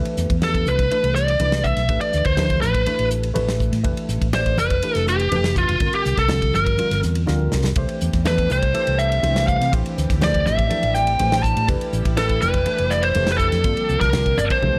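A worn, slightly out-of-tune tine electric piano with phaser opens this bright, funky jazz fusion excerpt in C major at 122 BPM, joined at once by a round, dark fretless bass and a dry, tight 70s drum kit, while soft-handed congas ring quietly underneath. An overdriven, biting lead guitar with slapback echo sits up front carrying the melody over chords moving from Cmaj7 through Fmaj9#11 to Gm7. After a drum fill, a distant, floating string section enters at 7.8 seconds with soft-attack sustained chords in the background, all in a moderate studio room.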